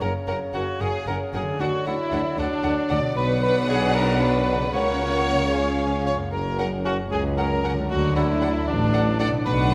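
In 6/8 at 76 BPM, counted in dotted quarters, this short, mischievous and whimsical film cue sets a lush, vibrato-rich violin section on the melody. A mellow, up-front cor anglais, a very quiet, airy flute group and a second, close-miked violin section carry supporting lines, while a background bassoon and a smooth-topped viola section with portamento fill the middle. A ringing, fingerpicked concert harp plays arpeggios, and a rich cello section, an even double bass section and a soft-attack tuba anchor the bass. A very quiet French horn section enters at 0.3 s with sustained chords, and the ensemble sits in the wet reverb of a scoring stage over a progression moving from F# through D and Bm.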